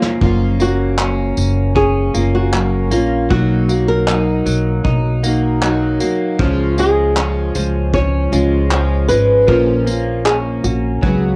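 Captured as a home cassette recording in a booth with moderate ambience, this carefree, sunny acoustic pop excerpt moves at 78 BPM in F# major: it opens on a drum fill from a distant, roomy brush kit with handclaps, tight kick, snare and tambourine, while a full-bodied, double-tracked fingerpicked steel-string acoustic guitar and a bright, compressed clean electric guitar playing arpeggios through subtle chorus and analog delay both begin at once, a woody pizzicato upright bass joins up front at 0.2 s, and a fingerpicked flamenco guitar carries the melody from 0.6 s with audible finger squeak over F#maj7, Bmaj7, C# and A#m.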